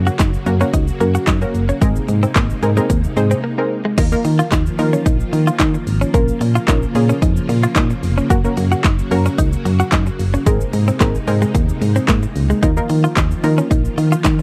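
A nasal, detuned sawtooth chord stab, a warbling string-machine viola pad and a round, dark FM bass open this confident yet bittersweet dance-pop excerpt in Eb minor at 111 BPM, all three pumping with sidechain, while a clean, direct-recorded electric guitar riff with subtle chorus and a punchy, tape-flavoured analog drum machine of kick, snare, handclaps, hi-hat, shaker and crash arrive at 0.1 seconds. The FM bass and drums sit up front, and the stab and pad carry chorus over chords moving from Gb and Abadd9 to Ebsus2 and Bbm. After a short break from 3.4 to 4.0 seconds, the next section begins, all in a dry, close 1970s-style studio sound.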